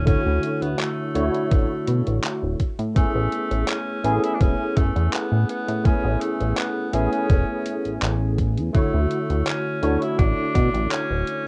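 An overdriven, thumpy electronic kick sits up front at a lightly swung 83 BPM in 4/4, while a detuned 8-bit drum machine adds tape-warm handclaps and hi-hat, and a glossy, nasal synth bass with chorus, tube saturation and a plucky filter anchors the low end. This woozy, dreamy vaporwave fragment in A major drifts from Dmaj7 to Amaj9 at 2.6 seconds and back to Dmaj7 at 8.7 seconds, carried by a clean tine electric piano in ensemble chorus. A clear, vintage tenor saxophone plays the melody with scooped notes through tape echo, set in light reverb with the rough, cassette-tape character of a home demo.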